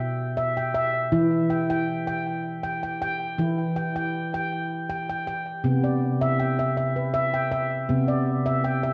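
Meditative and gentle, this brief world-music clip moves at 80 BPM in 3/4 in E minor, with a lone fingertip-played handpan ringing up front across C3 to G5, its stainless-steel tone carrying tape echo. The harmony rests on E minor before shifting to C at 5.6 s. A wet concert-hall reverb surrounds the instrument, while the worn cassette sound adds a gentle warble of pitch drift.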